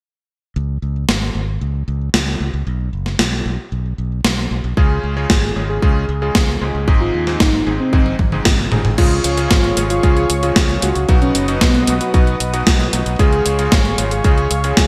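A bright 1980s-style digital production with light reverb frames this sunny, danceable italo disco passage at 114 BPM in Db major. A growly, up-front fingered electric bass opens at 0.6 s, soon joined by a tape-warm, sampler-style drum machine with a gated-reverb snare, crash, hi-hat and toms that roll into a fill before the second section. At 4.8 s a punchy layered electronic kick, clangy electric grand piano stabs with subtle chorus, and a round, detuned octave-layered synth lead with chorus, vibrato and digital delay arrive, and from 9.0 s a smooth sawtooth analog pad adds soft-attack sustained chords.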